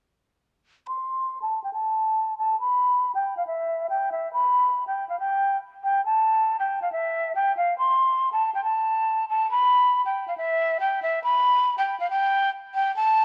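A half-time 4/4 feel drives this tense, menacing hip hop passage, cut from a longer piece. A breathy jazz flute carries the melody from 0.9 to 13.2 seconds, its metallic, vibrato-laden tone sitting up front with a soft attack, lifted highs and an unsteady quality, while a low-pass filter sweep runs across its whole line. A moderate, lush hall reverb surrounds the playing.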